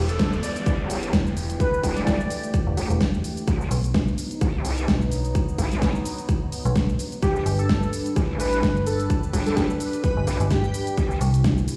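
A swung 4/4 groove at 128 BPM drives this aggressive, gritty bass house excerpt in E minor, cut from a longer piece, with a punchy, tape-warm electronic kick and a big-room kit of hi-hat, shaker and a huge snare. Two basses share the low end between E1 and C2: a metallic, dark FM bass sits up front with tube saturation, while a nasal, wobbling vowel-sweep bass with overdrive and chorus joins at 0.7 s. A detuned sawtooth pad warbles and evolves beneath, holding sustained chords through subtle chorus, and both basses and the pad pump with sidechain compression. An airy, dreamy lead with vibrato and dub echo floats between G4 and D5, playing early on and returning at 7.2 s as the chords move from Em through B and G toward C. An electronic downlifter opens the clip until 3.5 s, and the whole mix carries the ambience of a big sound system in a bare stone room.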